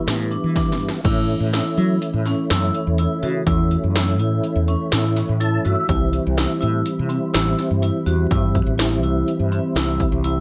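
Set in a straight 5/4 at 124 BPM, this brooding, intricate progressive instrumental moves over a harmony that shifts from E minor to A and then C, with 80s electronic pad drums, built from a punchy kick, gated snare and metallic hats, adding a short fill from 0.6 s. A dark, round fretless bass with subtle chorus sits up front beside a mellow tonewheel organ whose clean tone carries chorus vibrato, key click and a slow rotary speaker, and the organ adds a brief fill at 5.2 s. Soft-mallet vibraphone arpeggios ring airily through tape echo and a slow motor vibrato, all within a light reverb in this section cut from a longer piece.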